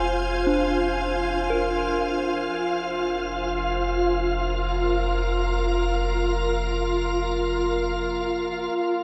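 Floating in free time, this melancholic, reflective ambient fragment sets a pure, organ-like pad holding sustained chords up front with ensemble chorus over a deep, round analog bass, while an airy, breathy wind-like texture hovers in the background and a gentle FM bell plays decaying arpeggios through chorus, phaser and tape echo from 0.5 to 6.3 s, all within a vast, echoing space.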